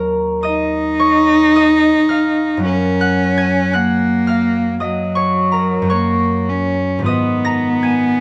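Close, detailed microphones place the cello and harp up front in a moderate recital hall reverb, giving this short fragment of a longer classical piece a hazy, mysterious glow. The impressionist duo moves slowly and freely, at roughly 50-56 BPM in 4/4 with a rubato feel. The concert harp opens at 0.0 seconds as the accompaniment, its fingerpicked strings ringing across a broad span from Eb2 to Bb6. The bowed cello joins at 0.4 seconds with the melody, a single player whose focused, vibrato-rich tone sits between Gb3 and Eb4 and has a smooth top and a warm body. The harmony drifts from Ebm9 to Gbmaj7 at 2.6 seconds and then to Abm6 at 7.1 seconds, and both instruments continue until the fragment breaks off at 8.2 seconds.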